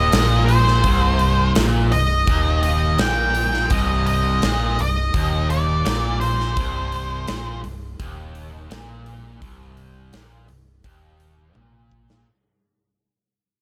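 Smoky and heavy, this blues rock and southern rock power-trio excerpt pairs a dark, up-front octave-fuzz lead guitar melody with plate reverb until 7.6 seconds against a bright, scooped, double-tracked distorted riff guitar, a round, foam-muted vintage bass and a huge arena drum kit with a punchy kick and hall sound, all on a C minor chord under a fade-out that runs throughout, closing with a drum fill at 11.6 seconds.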